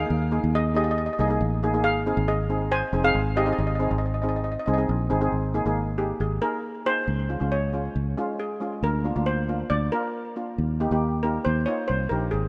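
A straight, bouncy 4/4 calypso groove drives this carefree excerpt, cut from a longer piece. A lead steel pan carries the melody with a bright, shimmering tone from hard rubber sticks, a digital delay trailing its notes, and from 5.3 seconds it takes a solo that runs to the end at 12.5 seconds. Beneath it, a double seconds pan played with medium rubber sticks supplies a metallic, mid-forward accompaniment until 12.3 seconds. A foam-muted fingered electric bass sits up front with a dark, round, amped sound. The harmony moves from Ebsus4 to Ab, then through Absus2, Db, Bb/D and Eb in the second half. Light reverb and a small room ambience give it the character of a rough home demo mix.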